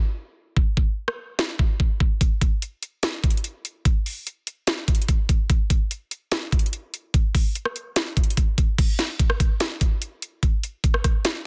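The recording is dry and close, with a dense, heavily limited modern master that keeps the sound tight and forceful. This brooding, dark hip hop fragment, cut from a longer piece, moves at 146 BPM in 4/4 with a half-time feel. A trap drum kit, electronic and produced, sits up front and enters at 0.6 seconds, during the opening break. Its knocking kick and sharp snare anchor the groove, while metallic hi-hats, rim clicks and a crash cymbal fill out the tape-tinged kit. Around 8.8 seconds the music shifts into a new section, and the drums carry on until 11.3 seconds.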